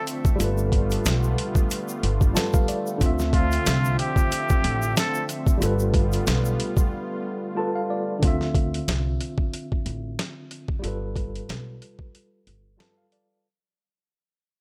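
Boom-bap hip-hop at 92 BPM with a 16th-note swing, moody and gritty: a nasal, breathy straight-muted trumpet plays an intimate jazz solo over the first 5.3 seconds, while a worn, slightly out-of-tune tine electric piano carries lightly overdriven accompaniment with a cassette character. A detuned sawtooth analog pad holds chorused, tremolo-laced chords until 8.2 seconds, and a pitched-down, compressed sampler drum kit sits up front with a thumpy kick and medium-tuned snare. A grainy tube shaker stays in the background, and a woody pizzicato upright bass underpins G9 and Dm9 chords in a small room before the excerpt fades out from 8.2 seconds.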